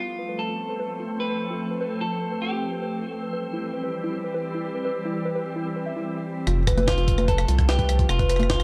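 This wistful, glitchy IDM excerpt at 148 BPM in F lydian opens with a bright, twangy clean electric guitar melody carrying tape echo and 12-bit sampler grit, over a glassy FM pad holding ethereal sustained chords through ensemble chorus and a warbling, lo-fi pluck tracing arpeggios with chorus and digital delay, while a faint reversed, dreamy texture drifts in at 0.8 seconds. At 6.5 seconds a round, deep analog bass with tube saturation arrives up front alongside a gritty, pitched-up jungle sampler-style kit of congas, hi-hat, rim click and medium-tuned snare, muffled by low-pass filtering, with a thumpy electronic kick joining just after as the guitar returns. The production is dark with light reverb, and the harmony moves from F to C and back to F.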